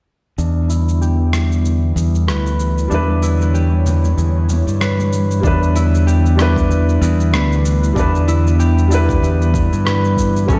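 A bright, punchy fingered electric bass sits up front in this smooth, sunset-tinged chillout excerpt at 95 BPM in E dorian, with a swung 16th feel opening on Em7. A soft, breathy pad holds chords in the background while a ringing concert harp plays arpeggios through a low-pass filter and tape echo, and the bass, pad and harp all carry filter sweeps during the first half. Gritty, overdriven electronic shaker and rim click tick along throughout; a natural baby grand piano with tape echo and very quiet congas join at 2.9 s, and a deep, layered electronic kick arrives at 5.4 s, all heard in a bare stone room through a big sound system.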